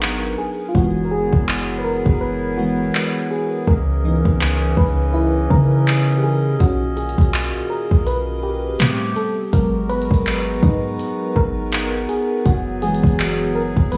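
A lightly swung sixteenth-note groove from a soft, tape-warm electronic drum kit of kick, smooth hi-hat and handclaps, re-recorded in a large room yet kept up front, carries this dreamy, smooth contemporary R&B excerpt, where a lush, chorused FM electric piano with a soft pad layer plays a solo from start to finish over a deep, boomy, sine-toned 808-style bass and the distant, roomy sustained chords of a mellow woodwind section pumping with sidechain. The harmony drifts through G#m9, F#9sus4, C#m9, Bmaj7 and Am9 before returning to G#m9 and F#9sus4, with a break running until 6.6 seconds.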